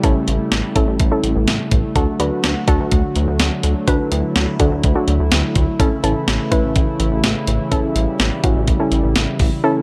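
Synth-pop at 125 BPM in a straight 4/4, this short cut from a longer piece feels driving yet melancholic, tuned slightly flat of standard pitch to A4 = 436 Hz. A clean 12-bit digital drum machine sits up front with a thumpy kick, a medium-tuned snare and hi-hat, its sampler-style hits carrying a tape-warm grit from being re-recorded in a small room. Beneath it, a chorused synth bass blends pulse wave and sawtooth with pulse-width modulation and a filter pluck, giving a glossy, retro low end that stays mellow. A soft, round pluck built from triangle, sine and sawtooth tones adds dark, decaying accompaniment with a filter sweep and chorus. A detuned sawtooth pad with a slow attack holds smooth sustained chords. The harmony moves from A7 to D at 2.0 seconds and resolves back to A at 5.8 seconds, all set in a light reverb.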